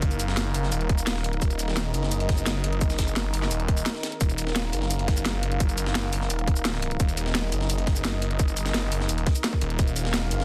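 Dry, dense and heavily limited, this tense, dark fragment of technical drum and bass runs at 172 BPM in Eb minor, with a tight, overdriven electronic kick up front beside a snarling, detuned sawtooth bass that growls with a moving notch and saturated grit. A layered electronic kit adds cracking snare, bright hats and shaker, while a pitched-up, tape-toned jungle sampler kit with a gritty snare sits in the background, filtered thin and re-recorded in a small room. Alongside it all, a deep, moody analog pad holds slow-attack chords with chorus and sidechain pumping, and a brief break falls at 3.9 seconds.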